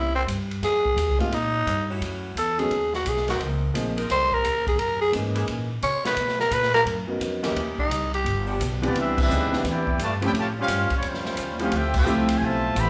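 A growling tenor saxophone opens this joyful big band swing excerpt up front with a raspy, gritty solo melody, riding over an edgy, close-miked saxophone section holding sustained chords until 8.9 s. At 173 BPM in 4/4 with a swing feel, an upright bass gives a woody, growly pizzicato line from the start, while a swinging drum kit with a punchy kick, a medium-tuned snare, hi-hat, ride and crash enters at 0.3 s with a polished, airy sound. A concert grand piano comps from 1.2 s with an intimate tone, deep bass and audible action noise, moving through rich, shifting jazz harmony before the music settles into C major. At 8.9 s the solo gives way to a brassy full-band passage: a trumpet section with soft attack and vibrato takes the melody up front, backed by a vintage-toned trombone section playing a second line in the background, with band accents at 9.1 s and 11.9 s. The whole group sounds as if it is playing live in one large room, bathed in a lush studio reverb with a mellow, rounded top end.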